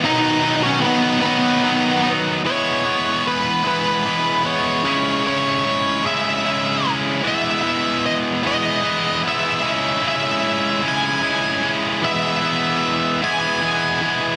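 The rhythm rolls in a straight 6/8, and from 2.4 seconds it settles into half time, giving this short rock passage, cut from a longer piece, a heavy, spacious gait. A bittersweet, cathartic mood runs through it as the harmony moves from B to E, then alternates between C#m and E. A double-tracked electric guitar, bright and overdriven, sits up front and carries the picked riff in a low-to-middle register from start to finish. Above it, an octave-fuzz lead guitar sings the melody with a warm, fuzzy tone, also picked and present across the whole 14.4 seconds. The two guitars share a moderate, large studio reverb with a digital ambience, and the dense, heavily limited modern master keeps the sound thick and forceful.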